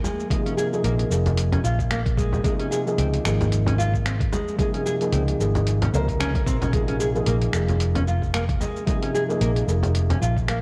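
Mystical and hypnotic, this organic downtempo excerpt in swung 4/4 sets a dark, thick-felt upright piano with sidechain pumping and tape echo beside fingerpicked nylon-string guitar arpeggios carrying 12-bit sampler grit and their own tape echo, while a ringing quartz singing bowl hums very quietly beneath. A gritty, overdriven sampler-style kit of finger snaps, hi-hat and shaker joins a deep, soft-handed frame drum; a thumpy electronic kick enters at 0.3 seconds, and a round, up-front fretless electric bass with sidechain pumping arrives at 0.8 seconds. Worn cassette tape lends the recording a warbly pitch drift within light reverb and studio ambience, as the harmony moves between Bb7(no3) and Dbmaj7.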